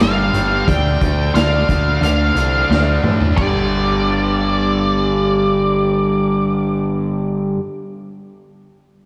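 Classic rock with a gritty, swaggering mood, this short excerpt moves at 89 BPM in a straight 4/4, cut from a longer piece. A biting, double-tracked overdriven guitar sits up front with a bright riff in the low and middle register, carrying slapback echo. Above it, a dark octave-fuzz lead guitar plays a distorted melody between D5 and G5, also touched with slapback echo, while a growling picked electric bass adds overdriven weight down low. A vintage drum kit with a punchy kick, medium-tuned snare, dark cymbals and a rolled-off top plays only until 3.5 seconds, closing with a fill from 2.7 seconds. The harmony moves from G5 to Dm and back to G5 at 3.4 seconds, and the whole mix sits in a lush hall reverb that gives it a big arena sound.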